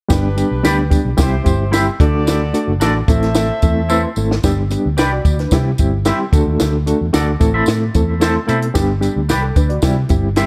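A straight 4/4 groove from a compact cocktail drum kit, with its high-tuned snare and tight kick, drives this uplifting, danceable 1960s-style soul piece, joined by a jingly tambourine and a round, punchy, foam-muted electric bass. A reedy electric piano with fast tremolo carries the accompaniment, a smooth jazz-style horn section with vibrato plays a second line until 4.1 seconds, and a bright, twangy clean electric guitar adds stabs from 0.6 seconds with spring reverb and tape echo. A drum fill at 3.9 seconds leads into the next section, all within a dark, warm small-room production.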